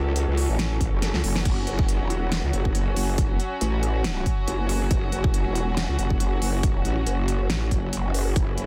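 Heavy wobble dubstep with a swung, half-time groove and an aggressive mood, cut from a longer piece. A growling, detuned, saturated bass sits up front with chorus and overdrive, while a distant, floating bowed string section holds soft sustained chords beneath it, pumping with the sidechain. A drum kit with a huge snare and crisp hats enters at 0.2 seconds, and a punchy electronic kick joins it at 0.8 seconds, with the kit playing a fill from 1.0 to 1.5 seconds, all inside a dense, heavily limited modern master with little reverb.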